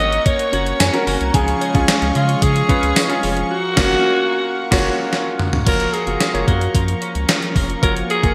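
A growling, raspy alto saxophone with delay carries the melody and takes a solo from 5.7 seconds in this nostalgic, glossy 1980s-style pop piece, over a clear baby grand piano, a bright twelve-string electric guitar riff with lush chorus, a round analog bass, an airy unison pad in the background, a chiming synth line that appears briefly from 0.8 seconds, and an up-front gated digital drum machine with a thumpy kick and overdriven gated-reverb snare, while a band accent and a drum fill lead into the solo.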